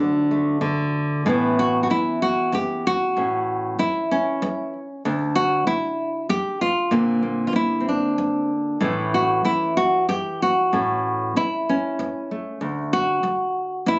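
A full-bodied, fingerpicked nylon-string guitar plays alone and up front through this pastoral folk fragment cut from a longer piece, moving in an unhurried 3/4 at 95 BPM from D through Aadd9, Dsus2, Bbadd9 and A to a closing D5, its deep classical tone and audible finger squeak caught on a phone in the room with light club reverb and a soft, dulled top end.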